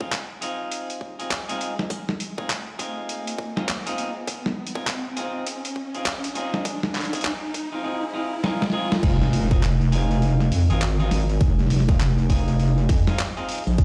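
Clean, picked electric guitar stabs open this playful, funky glitch hop excerpt, roughened by 12-bit sampler grit, pumped by sidechain and trailed by delay, over a punchy, layered electronic kick that sits up front with a high-pass filter. A boom bap sampler-style kit joins almost at once, its pitched-down, gritty snare, hi-hat, handclaps and crash cymbal sounding compressed and tape-warm, as if re-recorded in a small room, all riding a swung sixteenth-note feel over an Fm7 chord. An electronic riser enters at 1.4 seconds to drive the build-up, and a drum fill arrives at 8.4 seconds. At 9.0 seconds the drop hits with an impact and a heavy, detuned wobble bass, square and sine tones saturated with overdrive and chorus, pushed up front as the loudest part. The whole mix carries light digital ambience and a stone-room reverb, like a big sound system playing in a bare space.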